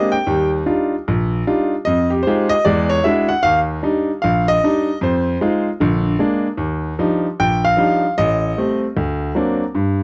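Playful and sophisticated, this short solo jazz passage swings at 152 BPM in 4/4 in Eb major, with a lilting swing on the eighth notes. A bright grand piano carries the whole passage alone from 0.0 to 10.0 seconds, ranging from A1 up to G5 with a brilliant, natural tone that sits up front. The harmony moves through rich extended chords, opening on Ebmaj9 and passing through Fm9, E9 and a Fm7 to Bb7 turn before returning to Ebmaj9 at 6.6 seconds. From there it slips into Am7b5 and Daug7, leaving the phrase unresolved as the cut ends. The sound is dry and close, with a small room ambience that recalls a 1970s studio session.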